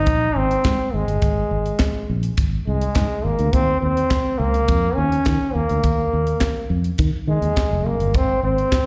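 Glamorous and joyful, this short disco cut at 104 BPM sets a clear, vintage-toned trombone melody with a slapback echo over a dark, round, foam-muted fingered electric bass and a tight, dry funk drum kit of kick drum, high-tuned snare, hi-hat and handclaps, all three parts placed up front. The harmony moves from a chordless opening into Ebsus2 at 3.5 seconds and lands on Ab at 8.1 seconds. It sounds like a live gig heard through a venue's PA, with small room ambience and a recital-hall reverb around the polished playing.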